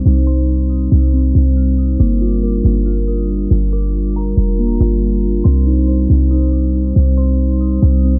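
Hip hop excerpt in C minor at 139 BPM with a half-time feel, hazy and spacious, where glassy, ethereal glass harmonica chords and muted, felt-like synth key arpeggios with chorus and dub echo sit over a deep, boomy 808-style bass that enters at 0.1 s up front, while an eerie, warbling detuned synth bell melody with phaser drifts in the background from 0.3 s, all moving through Cm, Gm7 and back to Cm in a dry, echo-heavy mix under a filter sweep.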